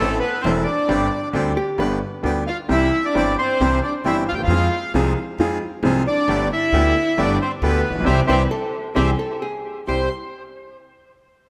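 Tango with a passionate, nostalgic mood and a rubato feel in four, this excerpt is led by a reedy, boxy bandoneon carrying the melody up front, its line trailed by tape echo. A second bandoneon adds bright, dry, close-miked stabs lower in its range, while a bowed solo violin sings an expressive second line with vibrato and portamento. A woody upright piano with short sustain plays the accompaniment near the front, and a pizzicato upright bass on gut strings gives a dark, thumpy foundation. A clean, compressed hollow-body archtop guitar, picked and amplified, slips in briefly at 1.6 s and returns near the end, shortly after the whole band begins an accent at 8.1 s. The harmony moves from Am through G to C and a dusky Fm, all bathed in a moderate concert hall reverb that lends the ensemble a spacious glow.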